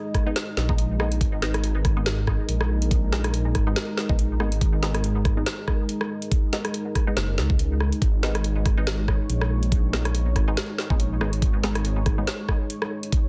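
Dark and meditative, this deep dubstep excerpt rides a half-time, swung 141 BPM groove in G# minor, with a knocking, up-front electronic kick and a garage kit of woody soft-clipped snare, rim click and metallic hats joining at 0.1 seconds, a rumbling detuned saw bass entering at 0.6 seconds, muted filtered dub chord stabs washed in phaser and dub echo, and a moody, full-bodied analog pad with chorus sustaining a single G#m chord beneath the dense, heavily limited mix.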